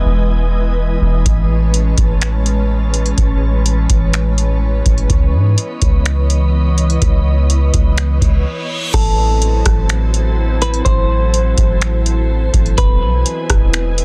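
A dense, heavily limited modern mix with a dry overall sound frames this dreamy, blissful excerpt of atmospheric cloud-rap at 125 BPM in a half-time 4/4 feel. It opens on a glassy, warbling FM pad with ensemble chorus and its own reverb, a soft, round 808-style bass up front, and an airy, breathy wind-like noise texture drifting through. At 1.3 seconds a booming analog drum machine enters with a deep kick, metallic hi-hats, finger snaps, rim clicks, crash cymbal and a softly clipped snare, as the chords move from Emaj7 through Amaj7 to C#m9. A reverse cymbal sounds from 8.3 seconds into a short break at 8.5 seconds. At 8.9 seconds a dark, clean semi-hollow electric guitar takes a compressed melody with subtle chorus and delay over Am6 before the harmony returns to Emaj7.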